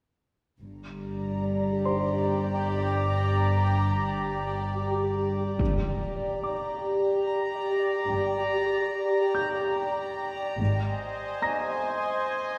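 Bathed in the wet reverb of a scoring stage, this tense, eerie suspense cue in triple metre opens with warm cello and double bass sections bowing sul tasto from 0.6 seconds. Their pure, floating low line sits under a bubbling, resonant sawtooth texture, mellow and up front, whose random filter steps and chorus shimmer over sustained chords. A polished grand piano adds high, present colour from 1.9 seconds, and at 5.6 seconds a huge, dark impact lands as the passage moves into its second part, with the harmony shifting from G minor to A-flat near the close of this fragment of a longer piece.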